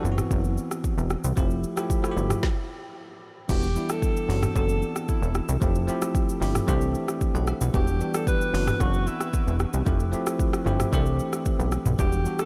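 A straight 4/4 groove at 113 BPM from a produced electronic afro-pop drum kit, with deep kick, woody snare, metallic hats, rim click, shaker, toms and crash, drives this smooth, mellow afrobeats excerpt alongside a punchy, funky, plucky analog bass with a fast-attack, decaying filter pluck and a bell-like, clean tine electric piano with subtle chorus, all three up front, before a brief stop from 2.4 to 3.5 seconds gives way to a breathy, distant alto saxophone solo with light vibrato and tape echo that carries the melody over jazzy extended chords in light reverb.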